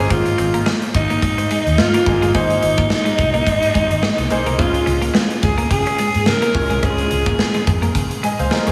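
1980s-style pop at 107 BPM in Db major, this nostalgic, romantic excerpt moves with a light 16th-note swing over an Abadd9 chord that gives way to Db at 4.6 seconds. Up front, a raspy, gritty alto saxophone carries the melody with vibrato and scooped notes through a diffuse ambient delay until 8.0 seconds. Beneath it, a polished, brilliant grand piano comps alongside a twangy, chorused twelve-string electric guitar riff in the background, while a dark, foam-muted fingered bass and a punchy big rock drum kit, entering at 0.1 seconds, drive a dreamy mix soaked in plate reverb.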